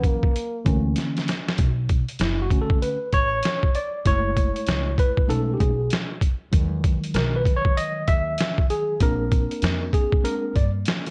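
Mellow and smoky, this jazz-hop excerpt at 97 BPM with a swung 4/4 feel opens with a veiled, bucket-muted trombone with slapback echo for its first second, alongside a gritty, pitched-down sampler-style drum kit with a thumpy kick that plays a fill from 1.0 to 1.6 seconds. After that, a worn, slightly out-of-tune, lightly overdriven tine electric piano takes a solo over chords from Bm7 to A#9 and a woody pizzicato upright bass, all colored by warbling cassette-tape drift and a small room's light reverb.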